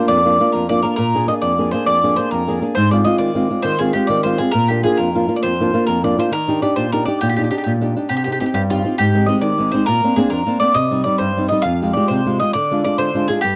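A mandolin and a flamenco guitar begin together in this passionate, romantic Italian folk excerpt in a straight 6/8, the mandolin carrying the melody with a round, picked double-string tone while the fingerpicked guitar supplies warm accompaniment beneath it. Both instruments sit up front in a dry, close 1970s-style studio sound with a touch of small-room ambience. At 8.1 s the harmony darkens into C minor for a second passage that runs to the end of the excerpt at 13.6 s.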